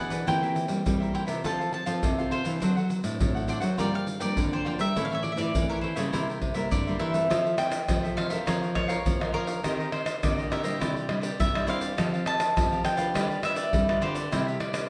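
A straight 4/4 samba-choro groove comes from egg shaker, pandeiro, tamborim and a deep surdo played with soft hands, setting a nostalgic, yearning mood in this short cut from a longer piece. A round, double-strung mandolin carries the melody with a slapback echo, over a crisp, bright cavaquinho and a warm, fingerpicked classical nylon-string guitar. A second nylon-string guitar, full-bodied with fresh strings and audible finger squeak, plays the bass line from the background, all set in a moderate large-studio reverb.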